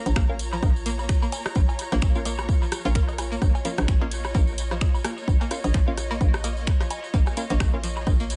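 Minimal techno in a clinical, hypnotic mood, this short cut from a longer piece rides a swung sixteenth-note feel and holds on a single minor chord throughout. An overdriven, punchy electronic kick sits up front beside a hollow, bouncy FM bass that pumps with the groove, while a house drum kit adds finger snaps and bright hi-hats with overdrive and dub echo. A jingly, close and dry tambourine shares that echo with a tape-toned set of electronic rim clicks, woodblock and cowbell. Over this, a twangy, string-like resonator pluck carries the riff with chorus, tape echo and a filter sweep, and a crisp, detuned wavetable chord stab flickers in the background through dub echo from 0.3 to 7.8 seconds. A lush, bowed symphonic string section with vibrato and a bubbling stepped-filter texture, resonant and drenched in its own reverb, both pump softly underneath. The mix is echo-heavy and digitally ambient, with its top end rolled off for a dark, enclosed sheen.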